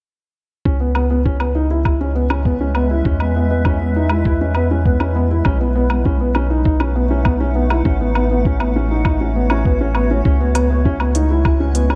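A felt-muted upright piano sits up front in this melancholic, moving piece of piano and strings electronica, playing a soft, boxy riff through tape echo. It runs at 100 BPM in 4/4 with a straight feel in C# minor, cut from a longer piece, and the piano, round analog bass and a muffled, thumpy, pitched-down kick all enter at 0.7 seconds. The bass is deep, nasal and dark with a fast attack and sidechain pumping. Electronic woodblock and smooth, overdriven hi-hat join just after, and at 1.7 seconds a granular cloud pad fades in with sustained, blurred, evolving chords, its own reverb and sidechain pumping. The harmony moves from C#m7 through E, B7 and F#m/A before returning to C#m7, all set in a light reverb.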